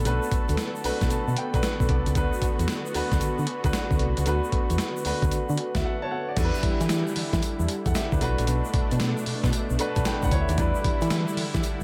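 R&B in a new jack swing style, this confident cut from a longer piece moves at 114 BPM in 4/4 with a swung sixteenth-note feel in E minor. Up front sits a gritty, compressed sampler-style drum kit with a thumpy kick, a medium-tuned snare, hi-hat, crash cymbal and tambourine, all overdriven and touched with gated reverb. A round, dark FM bass with a quick attack shares the spotlight, giving the groove a punchy low end. A smooth, vintage grand piano comps through the progression of Bm7, D6 and Em7, adding fills around 0.6 and 9.5 seconds, while a thick, nasal, detuned sawtooth pad holds sustained chords under a chorus effect. A grainy egg shaker sits in the background, and the overall mix is dry and close, with the shift into the second section arriving at 6.4 seconds.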